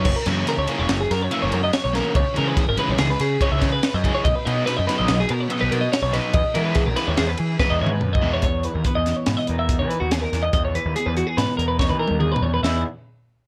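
Math rock and midwest emo at 143 BPM in 5/4, bright and wistful in E lydian, this short excerpt moves through F#7, C#m7, Bmaj7 and Emaj7 under a worn, warbling cassette-tape sheen with little reverb. A twangy, compressed twelve-string electric guitar spins clean picked arpeggios up front, a fuzzed, punchy picked bass drives underneath, and a crisp fusion kit with a high-tuned snare, bright cymbals and a pumping small-room sound plays throughout, adding fills at 7.6 and 11.8 seconds. A double-tracked, overdriven semi-hollow guitar riffs until 8.4 seconds, when a dark, mellow fingered electric guitar takes over as accompaniment.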